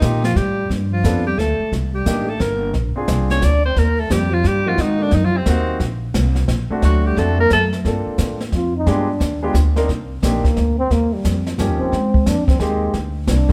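A moderate stone-room reverb surrounds this live small-group jazz excerpt, a cool, swinging waltz in G minor at 176 BPM in 3/4, played in a swing-and-bop style. Up front, a vintage-toned alto saxophone carries the melody with light vibrato, subtone and scooped notes until 7.7 seconds, while a breathy, whispered trombone plays a second line and then takes a mellow solo from 7.8 seconds. A polished concert grand piano with audible action noise and long sustain accompanies throughout, over a woody, thumpy gut-string upright bass and a brushed drum kit with a boomy kick.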